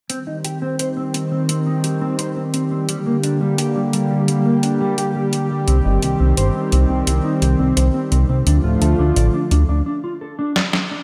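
A glossy, pulse-width-modulated synth bass with a moving notch enters at 5.7 seconds and stands out in this moody, cinematic synthwave excerpt at 86 BPM in C dorian, sitting under a smooth, detuned sawtooth pad that holds sustained chords through Cm, Gm and Dm. Further back, a dark, clean, fingered electric guitar plays a riff softened by lush chorus, a low-pass filter and digital delay. A detuned 8-bit drum machine supplies tape-tinged hi-hat and a medium-tuned snare through gated reverb, all set in bright 1980s-style digital production with a lush hall reverb, and a break at 9.9 seconds closes on a drum fill.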